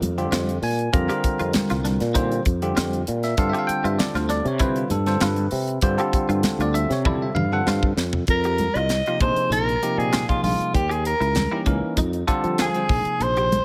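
This excerpt of funky, nocturnal electric jazz fusion opens with a barky, bell-like tine electric piano over a growly fretless bass with subtle chorus, a dry, tight funk drum kit with a high-tuned snare, and very quiet, soft-handed congas set in a live room. Moments later, at 0.3 seconds, a clean, twangy electric guitar joins with compressed, picked stabs treated with ensemble chorus, sitting in the background. The harmony rests on suspended chords, moving from Fsus4 to G9sus4, and a drum fill arrives at 7.1 seconds. At 8.3 seconds a growling soprano saxophone takes the solo melody with raspy grit, vibrato and scooped notes, sounding distant and roomy yet up front. Underneath it the chords shift through F9sus4, Bb9sus4, Eb7b9 and F7, all within light reverb and a small room ambience.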